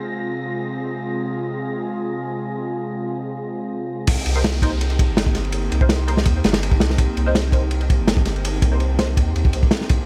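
Drum and bass with a jungle edge, this raw, dark cut from a longer piece runs at 165 BPM in straight 4/4, centred on C minor. It opens on an airy, breathy pad holding sustained chords over Fm/C, drifting with chorus beside a faint wind-like tuned noise texture washed in its own reverb. The drop lands at 4.1 seconds, as the harmony moves to Cm7 and a crunchy breakbeat kit arrives up front, saturated and gritty, with a tight kick, medium-tuned snare, and dusky crash and ride cymbals under a rolled-off top. A round, soft dub sub bass enters at the same moment, while a background electronic downlifter briefly sinks beneath the groove. From 4.4 seconds, a muted, full-bodied filtered chord stab with a short pluck adds colour through phaser, ensemble chorus and dub echo, all set in a studio reverb.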